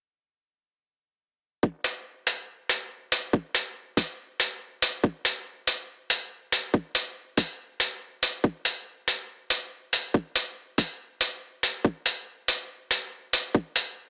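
Deep dubstep at 141 BPM in 4/4, this short cut from a longer piece moves with a half-time feel and a 58% swing on the sixteenths, setting a cavernous, meditative mood. An electronic kick drum enters at 1.6 seconds: layered and tight, it sits up front with a high-pass filter trimming its bottom. An electronic hi-hat joins at 1.8 seconds with a sampler-style character, compressed and pitched down into a gritty texture. The hats were re-recorded in a large room, and low-pass filters shape both the hats and that room sound. Both parts stay forward in a dry mix, with the kick stopping at 13.6 seconds and the hats carrying on to 13.9 seconds.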